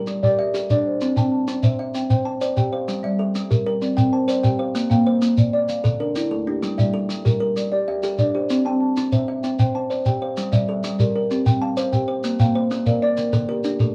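A hypnotic, trance-like cycle in the southern African traditional style, built as an mbira-style interlocking pattern in 12/8 with a straight feel. A plucked kalimba with a woody, boxy thumbnail attack sits up front, spinning arpeggios across the same span as a soft-mallet marimba, whose rosewood bars sound round, mellow and full in a close, dry pickup. A grainy shekere joins at 0.1 seconds, close and forward, keeping the percussion going alongside the two arpeggiating parts. The harmony circles through G minor, C, B-flat and D minor, and the cycle shifts into a second section at 10.4 seconds before the cut-off at 13.9 seconds. A moderate small-room reverb surrounds the ensemble, and the whole sound carries the worn, warbling character of old cassette tape, with its pitch drifting unsteadily.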